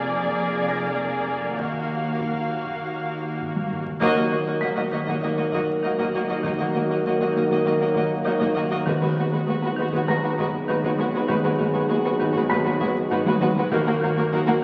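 Cinematic suspense film score at 99 BPM, mysterious and uneasy, in which veiled, muted string sections carry a dark melody, a second line, viola accompaniment and a cello and double bass foundation, while a woody, hard-mallet marimba riff, taiko drums and a high, intimate baby grand piano texture sit in the background. At 4.0 s the music settles into Eb minor with a band accent as a mellow French horn section and a bright trombone section add sustained chords, and timpani sounds briefly from 8.9 s. The whole passage, cut from a longer piece, is bathed in a wet scoring-stage reverb and the crackle of a very old 78 rpm record.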